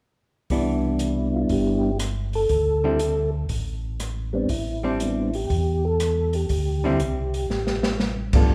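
Swinging and bluesy, this soul jazz organ trio moves at 120 BPM in 4/4 with a strong swung eighth-note feel, cut from a longer piece. From 0.5 s, a soft, flute-like tonewheel organ carries the melody with a percussive second-harmonic attack, colored by chorus vibrato and a slow rotary speaker. A second, round and mellow tonewheel organ holds down the bass line, also treated with chorus vibrato and slow rotary, while a hollow-body electric jazz guitar adds clean, dark accompaniment a little further back. The acoustic drum kit sits up front with a boomy kick, medium-tuned snare, rim clicks, hi-hat and dusky crash cymbals, and plays a fill at 7.5 s. The harmony moves from Cmaj9 to A7sus4 and then D7sus4, all set in a moderate recital hall reverb that lends the trio a church-like spaciousness.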